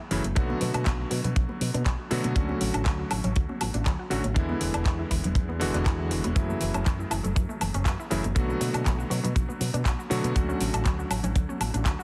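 A clangy vintage electric grand piano with slapback echo comps up front and a lush, detuned sawtooth unison pluck with tape echo ripples arpeggios in the background from the very start of this groovy, sleek nu-disco excerpt, both pumping to the sidechain over Bm7, Dmaj7, E7 and F#m7. A warm envelope-filtered fingered electric bass and a pop drum kit of handclaps, metallic hi-hats, shaker and woodblock join almost at once, distant congas follow, and a tight, dry kick arrives at 0.4 seconds to drive the lightly swung 120 BPM groove in 4/4, all in a heavily compressed, radio-like sound with light reverb.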